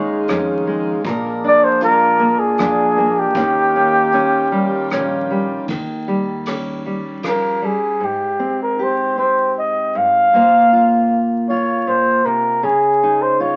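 A breathy, mellow flugelhorn carries the melody up front over dark fingerpicked steel-string acoustic guitar, nasal harmonium chords and woody pizzicato upright bass, opening this tender, heartfelt acoustic folk-pop ballad at 78 BPM in 3/4, with a distant soft brush drum kit joining at 0.3 s. The harmonium stops at 5.7 s and the bass and drums fall away by 7.4 s, leaving the flugelhorn, with light vibrato and scooped notes, and the guitar to move through Abmaj7 toward Dbadd9. A moderate club reverb and the crackle of a very old 78 rpm record give the recording an aged sound.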